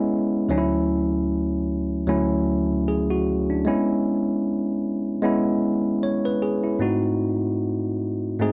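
A lone tine electric piano opens this short soul piece, clean and up front, heard through a combo amp with a light touch of reverb around it. The mood is silky and cinematic, moving at a relaxed 76 BPM in 4/4 with a gentle swing on the sixteenth notes. Set in C# phrygian, the piano spans from a deep D2 up to C#5, settling on a Dmaj7 at 0.5 seconds before shifting to a C#m7 at 3.7 seconds. At 6.8 seconds the music turns to a new section built on a tense G#7b9, which colors the closing moments. Cut from a longer piece, this brief passage of about 8.5 seconds feels like a glimpse into a late-night scene.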